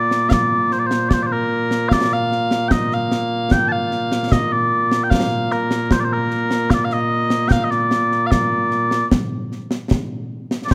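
Proud and stirring, this short passage of Scottish traditional pipe music, cut from a longer piece, moves in a three-beat metre with a straight feel. Mellow small bagpipes carry the melody from the first moment, sounding sweet and continuous as they play solo at the front of the mix across a range from Bb2 to A5. A concert snare drum and concert bass drum join at 0.1 seconds, acoustic and up front, with a close, dry sound and dark cymbals. The piece falls into two parts, with the second beginning at 5.9 seconds, and both the pipes and drums carry through to the end at 10.7 seconds. A moderate recital hall reverb surrounds the performance.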